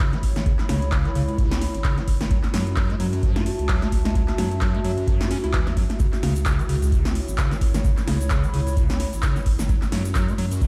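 Played through a big sound system in a bare stone room, this raw, gritty acid house passage at 130 BPM in C# minor swings its sixteenths over a deep, overdriven electronic kick and an overdriven analog drum machine with punchy snare, handclaps and metallic hi-hats. A squelchy, resonant square-wave acid bass riff with a filter sweep, chorus, tape echo and sidechain pumping rides over a thick, saturated sine sub bass, while a warbling, nostalgic lo-fi pad adds a dark, chorused haze through C#m7 and F#m7. A grainy, bright egg shaker slips in at the back from 6.0 seconds.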